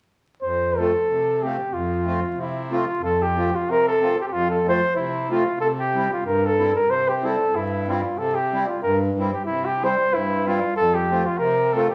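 A wet recital-hall reverb surrounds this short cut from a longer piece, with a faint vinyl crackle and a small-room ambience giving it the feel of an old record. It is a bouncy, jolly alpine folk dance in 2/4 at 93 BPM, set in F major with a gentle swing on the eighth notes. A clear flugelhorn carries the melody up front from 0.4 seconds, playing in a classical style with light vibrato and a smooth top. Beneath it, a reedy, close-miked accordion supplies full, dry accompaniment with a slow beating in its tone. The harmony moves from F to C at 5.6 seconds and back to F at 10.7 seconds, and both instruments play through to 11.9 seconds.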